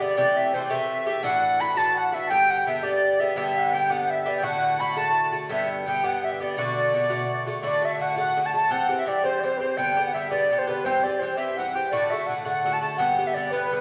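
An airy wooden flute carries the melody in this bright, cheerful Celtic jig, its crisp attack and slightly unsteady vibrato giving the tune a lively, human edge. Set in 6/8 at 112 BPM in D mixolydian, the piece is cut from a longer performance and runs about 13.8 seconds, with all three instruments playing from start to finish. A reedy accordion with light tremolo tuning adds a sweet second line in the same upper range as the flute, sitting a little further back in the mix. An acoustic Irish bouzouki provides the accompaniment, its picked double strings sounding mellow yet metallic and placed up front. The harmony opens on Am7 and Dadd9 before settling between G and D, and a second section arrives at 7.6 seconds, moving through D, C and G. A wet recital-hall reverb surrounds the trio, lending the feel of a church or concert hall.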